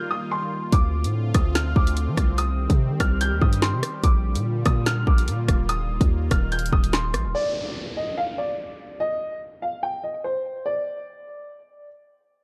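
A dark, warm digital ambience frames this ominous, tense drill excerpt at 145 BPM in half-time, where a mellow, slightly detuned upright piano with tape echo carries the melody above an airy, chorused sawtooth pad, a punchy, heavy sine 808 bass and an up-front electronic drum kit with hard-clipped kick, woody snare, hats and rim click, until the pad, bass and drums fall away by 7.3 seconds, an electronic downlifter sweeps through, and the piano carries on to 11.9 seconds.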